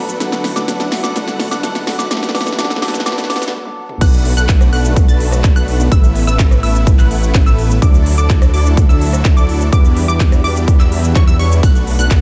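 A straight 4/4 pulse drives this euphoric, powerful festival progressive house passage, which opens as a build-up. A soft FM synth bell, a dark, worn baby grand piano, a very quiet riser and a big-room drum kit with punchy snare, crisp hats and a drum fill join a huge, airy supersaw riff, while smooth bowed strings hold chords in the background. After a brief stop at 3.5 seconds, the drop lands at 4.0 seconds as a punchy, up-front electronic kick and a thick, chorused detuned saw bass arrive alongside a lush unison pluck arpeggio, all under light reverb, with sidechain pumping on the piano, strings, lead, pluck and bass and tape echo trailing the bell, piano, lead and pluck.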